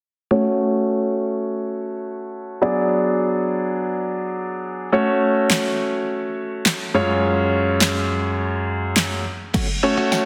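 Dance-pop with a confident, bittersweet mood, opening on a brilliant grand piano with audible action noise, sidechain pumping and a filter sweep over a minor-key chord progression, joined at 5.5 s by a punchy, up-front deep house drum kit with handclaps and crash cymbal that plays a fill from 9.5 s, as a woody FM synth pluck arpeggio and a clean, picked electric guitar riff with analog chorus slip in briefly beneath a lush hall reverb and dense, heavily limited master.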